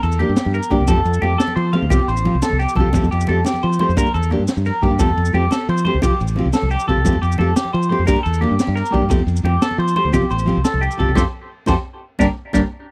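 A rolling 12/8 highlife groove at 117 BPM, counted in dotted quarters, drives this joyful, danceable guitar-band excerpt in F major, cycling through Gm, Fadd9 and Csus4, with a crunchy breakbeat drum kit of gritty, saturated punch, high-tuned snare and ride cymbal, ringing congas set in the background, grainy maracas, and a round, dark fingered electric bass up front. A bright, twangy clean electric guitar spins arpeggios through phaser and tape echo, while a full-bodied, fingerpicked nylon-string guitar joins at 0.2 seconds with classical-style accompaniment. The sound is dry and close in a 1970s studio manner, with a drum fill at 4.5 seconds and a band accent from 11.2 seconds carrying to the cut.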